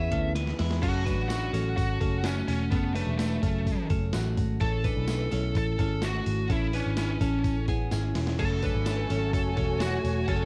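A dark, distorted high-gain lead guitar melody opens this bittersweet, restless jangly indie pop piece together with bright, twangy twelve-string electric arpeggios, a full-bodied picked acoustic guitar in the background, a round, foam-muted electric bass up front and a brief lush bowed string chord. A gritty, thumpy sampler-style drum kit enters at 0.1 seconds and plays a fill at 0.4 seconds, a distant, jingly tambourine enters at 1.1 seconds, and the woody, vibrato-rich strings return at 8.4 seconds after a second drum fill, with cassette-tape grain on the guitars, strings and drums in a dry home recording.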